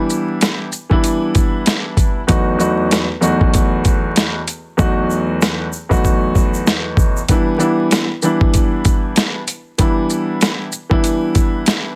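Tough and gritty, this boom-bap hip-hop excerpt moves at 96 BPM in E minor with a 60% swing on the 16ths, as a dark, mellow concert grand piano with audible action noise, deep bass and a vintage plate-reverb sheen carries the Em7 to B7/E harmony up front. A compressed, overdriven sampler-style drum kit sits alongside it with a thumpy kick, medium-tuned snare, hi-hat and shaker, its hi-hats dropping out from 4.8 to 7.3 seconds before the Em7 returns. A grainy, bright egg shaker sits in the background, and the whole track is densely limited with vinyl crackle.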